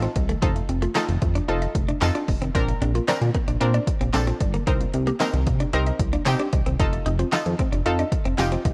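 A punchy, overdriven deep house drum kit with a fat snare, handclaps and hi-hat drives this upbeat, euphoric dance-pop excerpt at 113 BPM, joined by a glossy, pumping synth bass, a round, warbling analog pluck, a woody mallet-like pluck playing delayed arpeggios in the background, a clean direct-recorded electric guitar riff under lush chorus, and a jingly tambourine from 1.0 seconds, all moving through F7, Bbadd9 and Cm7 inside a worn, cassette-tape ambience with warbly pitch drift.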